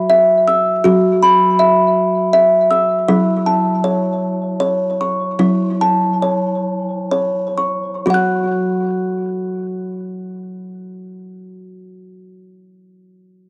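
Hypnotic and gentle, this meditative world piece for tuned percussion is carried by a solo kalimba in 6/8 at 40-54 BPM in F# minor pentatonic, its woody, bright, ringing thumbnail-plucked tones sitting up front across F#3 to F#6 with cassette tape grain and tape echo, moving from F#5 to an F#m7 as the pulse slows from 3.1 to 8.1 seconds before returning to F#5, all within a short, wet booth ambience on a home cassette recording cut from a longer piece.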